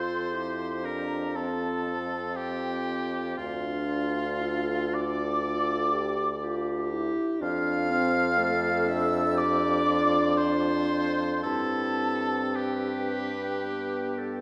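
From the first moment, a serene, lyrical wind quintet unfolds in an unhurried, rubato romantic movement, with an airy, expressive concert flute singing the melody in its upper register with vibrato. A clear, up-front oboe with light vibrato traces a second line beneath it, while a bright clarinet sits in the background and a mellow, distant French horn adds roomy accompaniment. A warm, up-front bassoon anchors the bass with vibrato as the harmony drifts from F through D minor toward a G-major close, all heard from further back in a wet recital hall in this excerpt cut from a longer piece.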